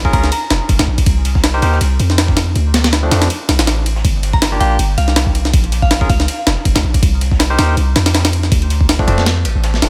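A raw, frenetic drum and bass cut with a jungle edge opens at 161 BPM, as a compressed, pitched-up sampler-style kit with a thumpy kick, high-tuned snare and ride sits up front alongside a deep, boomy 808-style bass, its sine tone carrying a noise layer and a fast, decaying attack. Over this, a bright, barky tine electric piano plays clean stabs with dub echo, moving through minor-seventh chords from Bbm7 through Cm7, Dm7 and Gm7. Underneath, a very quiet acoustic breakbeat kit adds a saturated, crunchy layer of hi-hat, shaker and snare with a dark, rolled-off top. A glassy, crystalline FM bell flickers briefly at the start, then returns with a chorused melody from 4.3 to 6.6 seconds, soaked in dub echo, just after a short break at 3.3 seconds. The swung sixteenths and gritty, large-room sound of the main kit give this excerpt, cut from a longer piece, a raw, frenetic drive.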